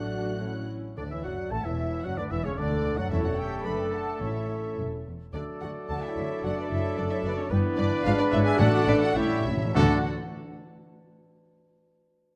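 A moderate scoring-stage reverb surrounds this lively, cheerful excerpt from a quick classical-period symphony movement in 2/4 with a rubato feel, where a veiled, con sordino violin section carries the melody over a second violin line, a clear oboe, a distant clarinet and a pure, tongued flute section, while a mellow bassoon and dark viola section accompany, a French horn section sustains chords, cellos and double basses hold the bass, a clear trumpet adds stabs from 1.0 seconds, and close, dry calf-head timpani strike in bursts, including a fill at 9.2 seconds.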